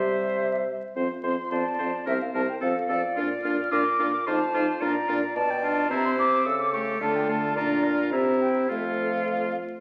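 A straight two-beat pulse drives this quick, spirited and cheerful classical-period wind quintet movement, cut from a longer piece, where a pure, distant concert flute sings the melody with expressive vibrato over a second line from the oboe, accompaniment from the clarinet and a warm, soft-attack French horn, both oboe and clarinet bright, and an up-front, mellow bassoon bass, all heard through recital hall reverb and the crackle of a very old 78 rpm record.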